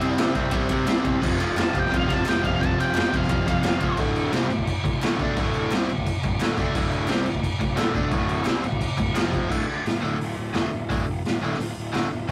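A rough rehearsal-room recording with moderate booth ambience gives this short cut from a longer garage rock piece a raw feel, and its mood is menacing and swaggering in a straight 4/4. Up front, a bright, double-tracked overdriven electric guitar picks the riff across chords moving from C5 to F5 to D5. Beneath it sits a growly fuzz bass, picked and overdriven, tucked into the background. The drum kit is saturated and gritty, with a high-tuned snare, a boomy kick and a rolled-off top, mixing crash, ride, hi-hat, kick and snare. A dark, octave-fuzz lead guitar adds a brief distorted melody from 1.6 to 4.0 seconds, while a crisp group handclap sits very quietly in the mix until 9.2 seconds.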